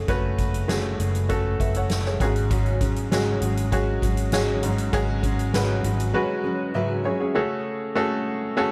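Bittersweet and earnest, this short piano-driven pop excerpt in F# minor moves at 99 BPM in a straight 4/4, led by a clear, woody, slightly detuned upright piano sitting up front with short sustain, over a dark, round, foam-muted vintage electric bass and a soft-mallet drum kit with a boomy kick and medium-tuned snare that both drop out at 6.1 seconds, while a fingerpicked dreadnought steel-string acoustic guitar adds a riff from 2.5 to 7.4 seconds, leaving the piano alone under light reverb as the harmony returns to F#madd9 at 7.4 seconds.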